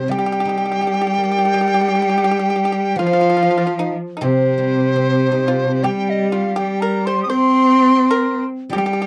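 Chinese traditional chamber music in a wistful, tender mood, this short fragment cut from a longer piece sets a reedy large dizi with a buzzing membrane and vibrato at the front, carrying the melody with a crisp attack. A bright, biting bowed cello, also played with vibrato, shapes an intense second line alongside a dry, percussive pipa plucked with fingerpicks, while a silvery, ringing guzheng supplies accompaniment in the background. Close, detailed microphones and light reverb give the ensemble an intimate presence through all 9.1 seconds.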